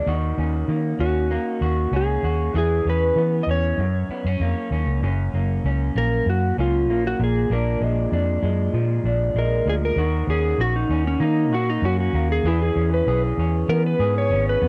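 Indie pop with a bedroom-pop haze, this sunny, nostalgic clip from a longer piece moves at 97 BPM in a straight 4/4 in F# major, tuned slightly flat of standard. An electric guitar through a small old amp opens the clip, sitting up front with a slightly broken-up, lo-fi, compressed tone, touched by subtle chorus and vibrato. A vintage fingered electric bass, foam-muted and round, enters at 0.1 seconds with a dark, amped presence up front. At 1.0 seconds a clean lap steel guitar takes the melody, its slide playing shaped by volume swells and colored by analog chorus and cassette-tape character. From 5.0 seconds the piece moves into a new section where an electric slide guitar solo carries through to the end. The harmony drifts through D#m7, E6, F# and A#7, all set in a light reverb that gives the cassette home recording its intimate, faded glow.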